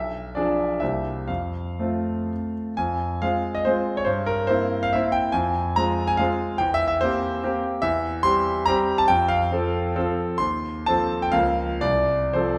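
Heard from further back in a recital hall with a wet reverb, this short cut from a longer romantic classical piece features a solo concert grand piano whose tone is bright and polished, with deep bass, long sustain and audible action noise. The triple-time dance moves with dotted rhythms and a flexible rubato, carrying a rustic, proud mood across a range from B1 to C6. The harmony shifts from minor into major at 7.8 seconds, and the piano plays through to 12.6 seconds.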